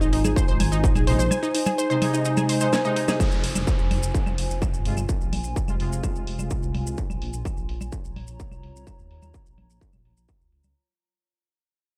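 A distorted, up-front electronic kick drives this dark melodic techno excerpt at 127 BPM in F minor, beneath a rumbling detuned saw bass, a punchy unison pluck arpeggio that plays until 3.1 seconds, bold brassy analog synth stabs from 1.1 to 7.0 seconds, a warbling lo-fi tape-like pad with chorus, grainy close maracas, a techno kit of cracking snare, filtered hats, claves and congas, and a faint downlifter, with sidechain pumping on the bass, pluck, pad and brass, dub echo on the pluck and brass, and a filter sweep on the drums as the track fades out after a drum fill.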